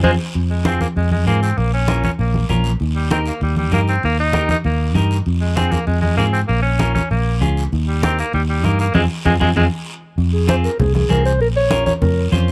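A driving, danceable cumbia in F minor at 195 BPM opens with a brief band accent, after which a bright, punchy vintage tenor saxophone takes a solo from 0.4 seconds, its scooped notes and vibrato riding over a clean, picked electric guitar and a round, foam-muted fingered bass set up front. Ringing congas struck with hard hands sit in the background alongside a raspy guiro, and after cycling through Fm, Bbm and Eb changes the band lands another accent at 8.9 seconds on Fm. At 10.3 seconds a dark, smooth-topped clarinet returns in classical style with an analog delay, carrying the melody in this close, dry cut from a longer piece.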